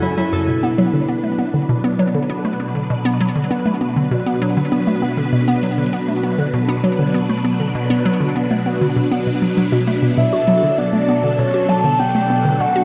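Mysterious and expansive, this ambient, sequencer-driven space music piece sets a swirling, vintage phased string machine holding sustained chords against a hollow, bouncy square pluck riff with chorus and delay, while a mellow concert harp rings out arpeggios only until 2.8 seconds and a round, octave-layered synth lead with vibrato enters with the melody at 10.2 seconds, all bathed in a wet concert-hall reverb within a dark production.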